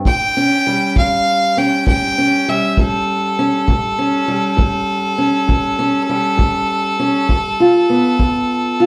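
A wet studio reverb places this swaggering, soulful excerpt of acoustic country blues further back in the room, where a biting, intense fiddle with light vibrato carries the melody up front over a dark, boxy fingerpicked parlour guitar and a distant, punchy kick drum played with brushes, rolling in 12/8 at 66 BPM on an A7 chord that moves to G7 at 7.3 seconds.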